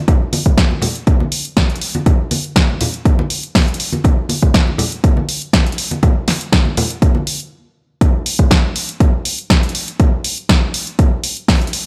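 Hypnotic and warm, this house groove at 121 BPM in a straight 4/4 is a short cut from a longer piece, built entirely from drums and percussion. A deep, layered electronic kick sits up front with overdrive and a large-room ambience, giving it real weight. Beside it, a punchy analog drum machine supplies hi-hat and a dry, punchy snare, also overdriven and close in the mix. Bright acoustic congas played with hard hands add a small-room texture underneath until they fall away at 7.2 seconds. After a brief stop at 7.5 seconds, the beat drops back in at 8.0 seconds for the closing section. The gritty hardware sound carries little reverb overall.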